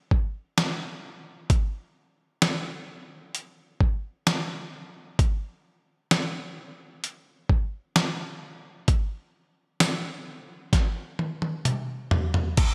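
A straight 4/4 groove at 65 BPM drives this blissful, dreamy dream pop excerpt, carried entirely by a dusty soul sampler-style drum kit that enters at 0.1 seconds and sits up front with a thumpy kick, fat snare, hi-hat, tambourine, crash cymbal and toms, its compressed, gritty, overdriven sound re-recorded in a small room and washed in gated reverb, before a drum fill arrives at 10.7 seconds, all set in a bright 1980s-style digital production with light reverb.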